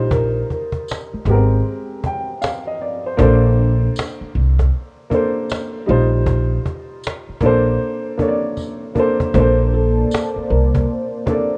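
Dreamy and nostalgic, this short lo-fi hip hop excerpt sways on a swung groove, with a boxy upright piano softened by cassette tape and low-pass filtering carrying the accompaniment through jazzy extended chords, up front beside a woody pizzicato upright bass. A cajon played with soft hands and a faint, jingly tambourine sit back in a small-room ambience, while a felt-muted upright piano, intimate and mellow with audible action noise, touches on the melody briefly at the start and returns at 9.4 seconds after a drum fill. At 9.8 seconds a deep, detuned analog pad with chorus swells in, giving the rough home-demo sound a moody close.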